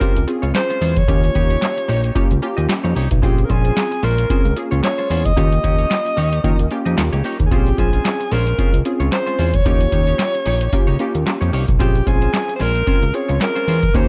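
Early-eighties boogie funk with a slick, late-night mood at 112 BPM in Bb dorian, where a breathy, close-miked alto saxophone carries a jazzy melody with vibrato over a chorused, punchy polysynth comp, a clean semi-hollow guitar riff, a booming dry drum machine with deep kick, tonal snare, metallic hats and handclaps, and a fat detuned analog bass entering at 0.2 seconds, all alternating between Bbm9 and Eb7 in a dark production with digital ambience.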